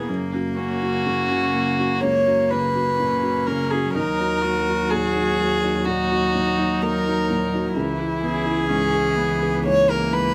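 A single bowed violin carries the melody up front in this melancholic, fragile neoclassical fragment, its rich, pure tone floating with a soft attack and played sul tasto, yet with a distant quality. Beneath it, a felt-muted upright piano supplies a mellow, intimate accompaniment, its thick felt dulling the hammers while its action noise stays audible. A lone viola adds a close, airy-bowed inner voice with light vibrato, and a warm solo cello sings a second line touched by slapback echo. A dark double bass anchors the low end with a smooth top. The piece moves at a slow 63 BPM in 4/4 with a rubato feel, passing from F# to D#m at 3.9 seconds and to C#m7 at 7.7 seconds, and the sound is dry and open-air, with little reverb and scarcely any room around the players.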